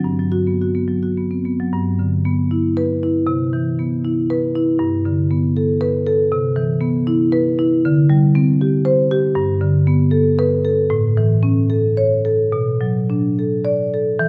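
A solo marimba played with medium mallets opens on a Gmaj7 and carries this hypnotic, reflective contemporary classical excerpt in a rubato 6/8 at 70-80 BPM in G major, tuned to A4 = 435 Hz, its warm, mid-forward tone sitting up front in a wet recital hall reverb as the harmony moves through G6, Cmaj7, Gadd9 and D7sus4, then to A, and settles on Bm7 at 12.5 seconds.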